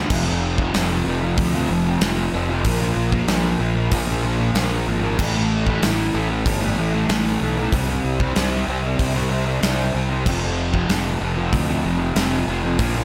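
Blissful and dreamy, this short cut from a longer rock piece sits in shoegaze and dream pop territory, moving at a steady 95 BPM in a straight 4/4 with tuning slightly below standard pitch. A thick fuzz guitar carries the riff from the start, dark and double-tracked, its distortion paired with a lush chorus as it cycles through power chords on F, Bb, A and C before returning to F at 10.3 seconds. Beneath it, a fingered electric bass adds a round, overdriven low end with its own fuzzy grit. The gated 80s drum kit is polished and up front, with a tight kick, a medium-tuned snare and bright cymbals ringing through an airy, gated big-room sound. Light small-room reverb ties the parts together, and the guitar stands as the loudest element over bass and drums.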